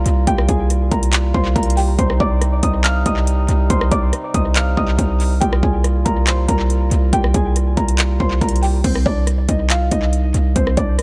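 Dark, brooding trap hip hop at 140 BPM in a half-time feel and C minor, cut from a longer piece, in which a worn, intimate grand piano with audible action noise carries the melody through a low-pass filter and tape echo over reedy, close-miked accordion chords that drop out at 8.8 seconds, while a saturated 808-style bass with a noise layer sits up front beside an electronic trap kit of hard-clipped kick, metallic hi-hats, handclaps, rim clicks and crash cymbal, the kit treated with its own tape echo, all in a dry, echo-heavy mix with dulled highs.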